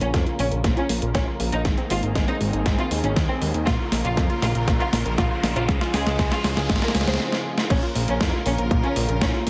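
A bittersweet, danceable italo disco passage in Bb minor opens almost at once with most of the band at 119 BPM in a straight 4/4. A lush, distant symphonic violin section carries the melody with vibrato and tape echo, over smooth sustained chords from a studio string section that sits in the background under a low-pass filter and a filter sweep. A detuned sawtooth pluck with chorus and tape echo spins arpeggios softly behind them, while a fat, thick analog bass sits up front beside a punchy, overdriven electronic kick that arrives at 0.1 seconds. The gated 80s digital drum machine adds crash cymbal, hi-hat and a gated-reverb snare with a gritty, sampler-style edge, and it runs a long fill followed by a second, shorter fill over a brief break from 7.2 seconds. A very quiet electronic riser sounds from 2.9 to 7.2 seconds. The chords move from Bbm to Abadd9, back to Bbm, then to Db and home to Bbm, and the heavily compressed, radio-like mix is bathed in a moderate plate reverb.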